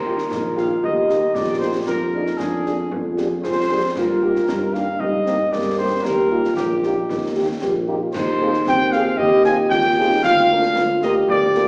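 Proud and rousing, this military-style march for wind band in a straight 2/4 is cut from a longer piece. A dark, tight trumpet section carries the melody up front. A euphonium with light vibrato sings a warm second line, and a very quiet, smooth-topped French horn section fills in the accompaniment. A mellow tuba, also with light vibrato, holds the bass from a distant, roomy position. Concert snare drum, concert bass drum and clash cymbals enter at 0.2 seconds with an acoustic, small-room sound. The harmony moves from Eb through Bb7/F, Eb/G, Fm7/Eb and Bb/D, and the recording has a wet recital-hall reverb and a small-speaker character, as if captured in a church or concert hall.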